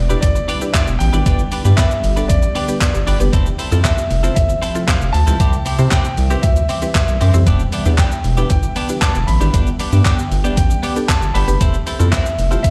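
A straight 4/4 beat at 116 BPM from a gated 80s digital drum machine, with its thumpy kick, gated-reverb snare, handclaps, hi-hat and shaker up front, drives this confident dance-pop excerpt, as a round, deep analog bass pumps beneath it, a dark, mellow baby grand piano carries the melody through digital delay, a clean, compressed twelve-string electric guitar plays a riff through lush chorus, and a woody, mallet-like synth pluck and an ethereal, airy pad with tremolo and ensemble chorus sit in the background, pumping with the sidechain over Em7, G, Fmaj7 and C, all heard as if played on a big sound system in a bare room.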